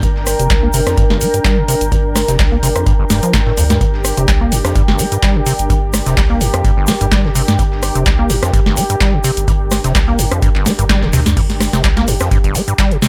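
An overdriven electronic kick, a booming analog drum machine with crisp snare, handclaps and metallic hats, a very quiet, gritty sampler-style soul kit and a grainy egg shaker open this hypnotic, trippy acid house excerpt at 127 BPM in G minor, where a rubbery, resonant square-wave acid bass riff rides over a round sine sub bass and a mellow, chorused analog pad holds a G minor chord beneath a blurred, evolving granular cloud pad, the pads and sub breathing with sidechain pumping, until a drum fill from 11.0 to 11.4 seconds leads into a closing stretch where the harmony falls away and the cloud pad drops out.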